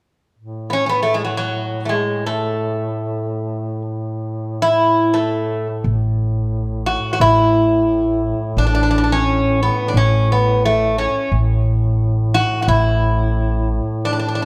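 A straight 4/4 pulse at 88 BPM carries this festive Turkish makam ensemble piece in A makam rast, cut from a longer work. A mellow duduk holds a low A2 drone from 0.4 seconds with vibrato and scooped, folk-style notes, while an up-front bouzouki, entering at 0.7 seconds, picks a metallic melody between F#3 and F#4 on double strings, some of them octave-doubled. At 5.8 seconds a woody pizzicato upright bass joins on A1 until 13.8 seconds, all set in a moderate scoring-stage reverb with a dark, warm production.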